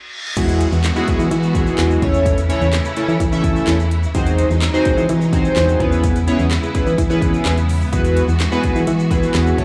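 Upbeat and euphoric, this dance-pop excerpt runs at 127 BPM in 4/4 with a straight feel, in E major, and is cut from a longer piece. It opens with a very quiet reverse cymbal and downlifter over a brief stop, and at 0.4 seconds the drop arrives, bringing in the full arrangement through to 9.6 seconds. A house drum kit with a punchy kick, cracking snare, metallic hats, handclaps and crash drives the groove, while a round, dark FM bass sits up front, pumping with the sidechain alongside a glossy, retro chorused polysynth built from pulse and sawtooth waves with a sub octave, filter sweep and slapback echo. Behind them, a lush symphonic string section holds smooth, bowed chords with vibrato, also pumping, and a grainy, band-limited tube shaker adds a faint vintage texture in the background. The harmony moves from Eadd9 through A/E, G#7/E and C#m7/E before returning to Eadd9, all over an E pedal in the bass, and the whole thing sounds like a live gig heard through a venue's PA, with club ambience and little reverb.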